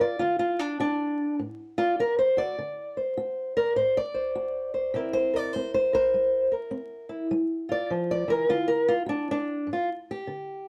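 Swinging eighth notes at 101 BPM in 4/4 drive this short, gritty and soulful slice of acoustic country blues, cut from a longer piece. A lone fingerpicked, ladder-braced acoustic guitar carries everything, sitting up front with a woody, boxy tone and the dull bite of old strings, ranging from G2 to D5. The harmony moves through D7, C7 and Bb6 before settling on D, then shifts at 9.7 seconds to a bare G7 chord as the piece turns toward a new section that runs to 10.7 seconds. A moderate studio reverb gives the guitar a little space, while the dark, warm production and a layer of vinyl crackle lend the recording a worn, old-time character.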